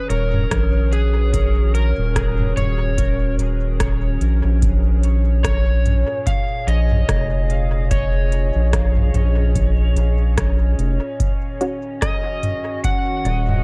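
A round, deep analog bass sits up front in this meditative, spacious ambient dub excerpt at 73 BPM in Eb minor, moving through Ebm7 and Bbm7 with a gentle 16th-note swing. An overdriven slide guitar carries the melody through dub echo over a warbling, nostalgic tape-like pad with chorus and phaser, while an electronic kit of crisp hi-hats, rim clicks and toms and a background kick from 0.5 s ring in a large room. A muted, full-bodied dub chord stab flickers briefly at 11.6 s, and the dark production keeps reverb to a minimum.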